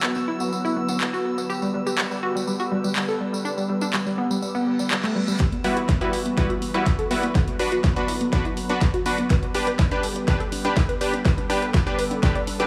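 A light small-room reverb surrounds this expansive, euphoric progressive house passage in G major at 123 BPM, cut from a longer piece. An airy, breathy pad holds sustained chords beneath a round, detuned analog pluck playing arpeggios with chorus and dub echo, while a house kit of handclaps, pumping bright hats and a cracking, overdriven snare plays alongside a jingly tambourine and a glassy harmonics texture drifting in the background, as the chords move from Bm to G. A reverse cymbal leads into a build-up at 5.4 s, where the tambourine and glass texture stop and a punchy kick drum enters up front. At 5.6 s a detuned supersaw stab with dub echo joins, as a drum fill and a filter sweep on the pluck carry the chords from Emadd9 back through Bm and G.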